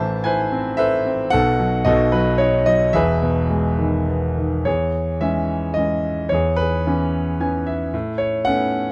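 Set in a dark production with light reverb, this short cut from a longer classical piece features a clear, smooth concert grand piano, up front with deep bass and a vintage character, playing a lyrical, hopeful solo in a flowing rubato triple metre, with a brief fill at 7.1 seconds before the closing Aadd9 chord.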